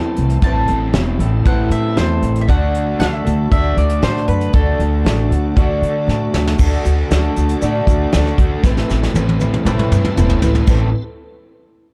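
Folk rock with a heartland rock lean, this wistful, dusty excerpt moves at 117 BPM in A dorian, with a double-strung mandolin carrying the melody until 6.0 seconds over a boxy, finger-squeaking swing-style acoustic guitar, a crunchy, double-tracked overdriven electric guitar riff, and a very quiet, piping tonewheel organ holding chords through a slow rotary speaker. An up-front woody, thumpy upright bass and a soft brush kit with a fat snare and dark cymbals anchor the groove, with drum fills at 6.1 and 8.6 seconds, while a grainy egg shaker joins in the background at 6.6 seconds. The chords move from Am to D and settle on Amadd9, all in a small, dark-toned room.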